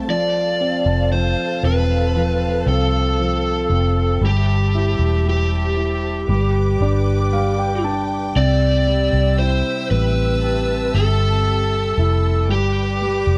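An overdriven, picked lead guitar with slapback echo carries the melody up front in this heartfelt, hopeful pop ballad at 58 BPM in C major, over a round, punchy foam-muted electric bass, a dark, mellow grand piano that adds a fill from 6.3 to 8.4 seconds, and lush, woody bowed strings holding sustained chords, heard in a dry, close 1970s-style small-room recording cut from a longer piece.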